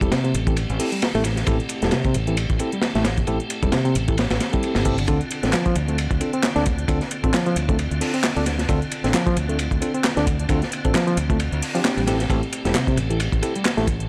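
A crunchy, up-front breakbeat kit leads this gritty, raw breaks excerpt at 133 BPM in D minor, its punchy kick, medium-tuned snare and dark cymbals saturated with a rolled-off top, while a garage kit layers handclaps and metallic hi-hats over a 16th-note swing. A barky, reedy electric piano riff with tube saturation and analog delay sits over a fingered electric bass, as a tine electric piano adds stabs roughened by 12-bit sampler grit and a low-pass filter, and a piping tonewheel organ holds chords in the background through chorus vibrato, slow rotary speaker and sidechain pumping. The chords move from Am7 to Dm7 at 5.1 seconds and back to Am7 at 12.1, with a reverse cymbal entering at 4.6 seconds, just before the change, all captured in a dry hardware recording with transformer saturation.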